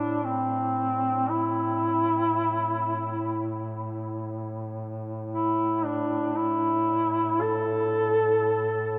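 In free time, this solemn, longing Caucasian folk lament in A minor (tuned to A4 = 441 Hz) sets a warm, up-front solo duduk melody, full of vibrato and scooped notes with a distant, roomy quality, over a quieter second duduk holding a low A drone, both playing from 0.0 to 9.0 s and bathed in a long, wet cathedral reverb in this fragment cut from a longer piece.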